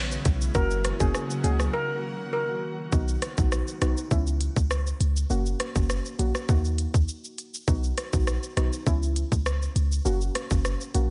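A shimmering, metallic steel pan carries a brief melody with a diffuse ambient delay from 0.6 to 2.8 seconds over an airy, ethereal pad that ends at 2.9 seconds, while a boomy, deep 808-style bass, a tight, tape-warm electronic island pop drum kit of kick, hi-hat, rim click and shaker, and soft, nasal chord stabs with chorus carry this sunny, summery dancehall excerpt in B major at 101 BPM through a chord cycle of C#m7, F#, D#m and B.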